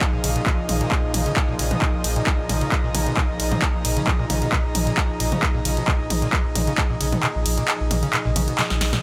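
Driving peak-time techno at 133 BPM, relentless and hypnotic, this excerpt sits on a Bb chord with a punchy electronic kick that drops out toward the end, a deep, thick saturated sub bass on Bb1, and an up-front analog drum machine of claps, hi-hats, ride, punchy snare and toms, closing with a drum fill at 8.6 s. Behind them a squelchy, gritty acid bass riff with resonant filter sweeps runs through lush chorus and delay, while a swarming, detuned, wave-folded drone adds tension beneath an airy, breathy chorused pad reaching up to Bb5. Sidechain pumping breathes through the bass, drone, pad and the drum machine's hats, toms and cymbals, all set in a light digital ambience.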